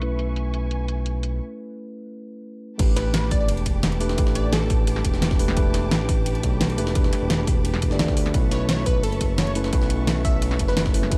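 A straight 4/4 groove at 173 BPM drives this lush, soulful liquid drum and bass passage, cut from a longer piece, where a pop drum kit with a fat snare, metallic hats and crash plays from the start. A punchy, layered electronic kick and a gritty, pitched-up jungle sampler-style kit, set in the background with a high-tuned snare and high-pass filtering on its cymbals, snare, hats and room, both enter at 2.8 seconds as the drop arrives after a short break. A mellow, clean tine electric piano with digital delay carries the accompaniment and has a filter sweep over the opening section, while a dark, bowed symphonic string section with vibrato holds sustained chords under sidechain pumping. An up-front, smooth sawtooth-and-triangle synth bass anchors the low end, and a catchy, detuned unison lead with delay, a noise layer and a moving notch plays the melody in two phrases, the second from 8.5 seconds. 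The harmony moves from B9sus4 to A9sus4 and back, all wrapped in a digital ambience with a dark, warm, low-pass filtered production.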